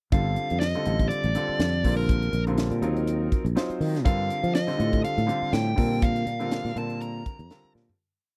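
A funk groove at 122 BPM in 4/4, with a light swing on the sixteenths, drives this short, complete piece of electric jazz fusion in Bb major, and the mood is slick and soaring. The crisp, polished drum kit sits up front with a punchy kick, a high-tuned snare, hi-hat and toms, while the growly fretless bass plays a syncopated riff that sustains through its notes. Over them, a dark, overdriven lead guitar picks a free, wandering melody that never settles on a recurring motif. A clear grand piano with a slightly worn character fills in syncopated chord stabs in quartal voicings, its notes ringing with long sustain across colorful harmony that moves through Gsus2, Ebm6 and Gm7 before landing on Bbadd9. The dry, close sound recalls a 1970s studio; the music fades out from 6.0 seconds, and a drum fill arrives at 7.8 seconds.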